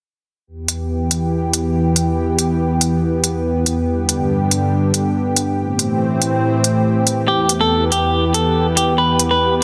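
Crisp, tape-tinged electronic hi-hats drive a swung half-time groove at 141 BPM in 4/4, setting a chaotic, aggressive heavy wobble dubstep mood in E minor. A thick, detuned sawtooth-and-square unison pad with slow attack, long release and bright chorus sustains chords from Em through G and Am7 back to Em, sitting up front in a lush hall reverb. At 7.3 seconds a clean, picked electric guitar enters with a short melody treated with dub echo, capping this cut from a longer piece with a dense, heavily limited modern sound.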